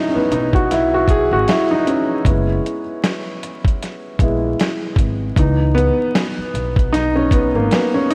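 A dark, mellow upright piano opens this reflective, nostalgic lo-fi hip hop excerpt in C# minor, taking the solo with audible action noise and a cassette-tape tint as the harmony moves from C#m9 to a rootless F#7sus4 at 2.2 seconds and back. A woody pizzicato upright bass and a gritty, compressed sampler-style drum kit, with a thumpy kick and sitting up front, join at a swung 77 BPM. Lush hall reverb and vinyl crackle soak the mix in a dreamy haze.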